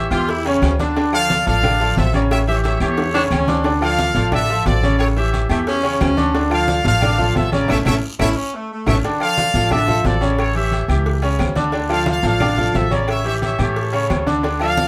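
Fiery and danceable, this salsa passage from a longer piece is led by a punchy trumpet section carrying the melody with light vibrato, over a brilliant, intimate grand piano whose action noise is audible and a thumpy, dark pizzicato upright bass up front, as the harmony swings between A7 and D minor. A tight, clear saxophone section adds a second line, dropping out briefly before returning at 3.1 seconds and stopping at 9.0 seconds, while damped, low-tuned congas, ringing agogo bells and timbales, a raspy guiro, very quiet woody claves and a very quiet cowbell with high-tuned bongos drive the groove beneath. The band plays live in one room with moderate reverb, and a drum fill and full-band accent arrive at 7.7 seconds before the section repeats.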